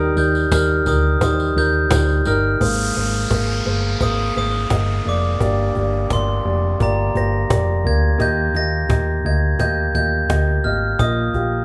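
A live band in a large studio, with a moderate reverb, frames this short, anthemic piano-driven pop passage in Eb major at 86 BPM in a straight 4/4. An upright piano sits up front with a woody tone and long sustain, carrying the accompaniment through chords that move from Eb to Abadd9, Gm, back to Eb and finally Bbsus4. Above it, a glockenspiel struck with brass mallets rings out the melody in a bright, sparkling, bell-like voice with an airy shimmer. A hollow-body short-scale electric bass, played with the fingers and amped, adds a dark, round, punchy low end. A snappy cajon with snares, close and dry, keeps the beat, joined briefly in the background by a jingly tambourine until 2.4 seconds. An electronic downlifter sweeps through the middle stretch, from 2.6 to 8.2 seconds, adding to the warm, anthemic mood.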